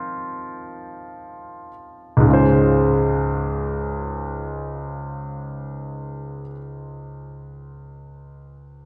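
Wrapped in a wet concert-hall reverb and a dark production, this emotional, hopeful pop fragment in free time and D-flat major features an up-front, brilliant concert grand piano with deep bass and a polished, short-sustained tone, which plays alone and slows over a Cmadd11/Eb chord before settling onto Dbmaj7 at 2.3 seconds, in a brief cut from a longer piece.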